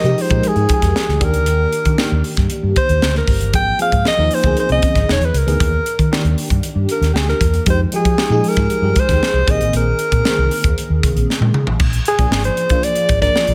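Polished 1980s jazz-funk pop at 116 BPM in Eb major, urban and glossy, with a breathy, close-miked alto saxophone carrying the melody through digital delay over a lush, dreamy FM electric piano with a soft pad layer under phaser and ensemble chorus, a round, foam-muted fingered electric bass, and a crisp fusion drum kit with a punchy kick, high-tuned snare and dark cymbals, moving through chords like Fm9, Ebmaj7 and Bb9sus4 before a drum fill at 11.3 seconds leads to a Bb7 at 11.8 seconds in this short excerpt cut from a longer piece.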